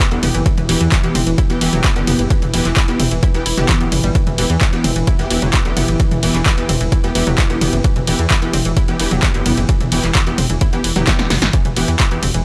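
A punchy, up-front electronic kick drives this relentless, industrial slice of peak-time techno at 130 BPM in E minor, held on a single E minor chord throughout a short section cut from a longer track. Around it, a punchy analog drum machine supplies handclaps, hi-hat, ride cymbal, snare and toms, overdriven and re-recorded in a large room, with sidechain pumping on the hats, cymbals and toms and a brief drum fill at 11.1 seconds. Underneath rumbles a dark, detuned sawtooth bass entering at 0.1 seconds, deep and beating, pumping against the kick. Aggressive, thick rave stabs cut through with a bright, full-bodied unison sound, coloured by chorus, built-in reverb and tape echo. In the background, a round analog pluck riff with ring modulation and a filter sweep rides on chorus and analog delay, while a mellow, evolving pulse-width drone holds a steady E. The mix is dry and gritty, with a hardware-and-cassette-tape character.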